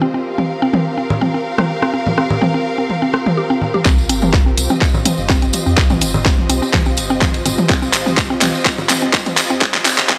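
This clinical, sparse minimal techno excerpt opens with a woody, round mallet-like synth pluck riff carrying chorus, tape echo and sidechain pumping, a very quiet pulsing gated texture, and a bowed, expressive symphonic string section with vibrato. An organic electronic drum kit of congas, rim clicks and toms joins at 0.4 seconds, and a jingly tambourine enters at 3.8 seconds. A build-up with a drum fill and filter sweeps then arrives at 3.9 seconds alongside a rubbery, hollow square bass, a punchy overdriven kick and a garage kit of handclaps and bright, low-pass-filtered hi-hats, the mix sounding dry and gritty within a lush hall reverb.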